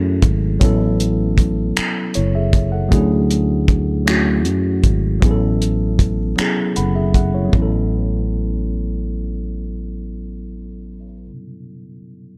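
A worn, slightly out-of-tune tine electric piano and a fretless electric bass open together on a rootless Dmaj9#11 chord, settling into a slow six-eight R&B groove at 52 BPM in A major with a tender, intimate mood. The harmony rocks gently between Dmaj9#11 and A69, the piano's clean, direct voicings sitting up front in the mid and upper register while the bass holds down a warm low end. A cloth-damped, thuddy drum kit of finger snaps, hi-hat and a tight kick comes in just after the start, its rolled-off top keeping the small-room sound soft and close. The electric piano steps forward with a short fill at 6.4 seconds, leading into a brief new section as the drums drop out at 7.7 seconds. The bass falls away at 11.3 seconds, leaving the piano to ring on alone until 12.4 seconds, all within a gentle wash of studio ambience in this fragment of a longer piece.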